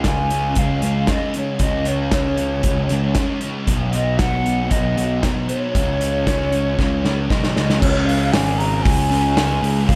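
Shoegaze and dream pop rock in a straight 4/4, wistful and blissful, this short clip from a longer piece sits in a dreamy mix soaked in lush hall reverb. A double-tracked fuzz guitar riff with subtle chorus and an overdriven picked bass ride up front beside a loose indie drum kit with a punchy kick and dark cymbals, while a mellow, hollow silver concert flute carries the melody with vibrato and a touch of delay. A drum fill from 6.8 to 7.8 seconds leads into a new section.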